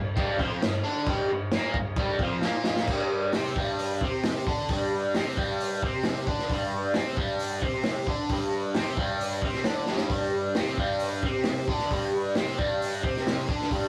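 A crunchy, bright overdriven electric guitar riff with a phaser opens this raw, swaggering garage rock excerpt in G minor at 133 BPM, joined at 0.2 seconds by a gritty, dark-cymbaled breakbeat drum kit with a tight kick, whose fill at 2.4 seconds leads the move from a G minor chord to a G5 power chord, all in a rough small rehearsal room.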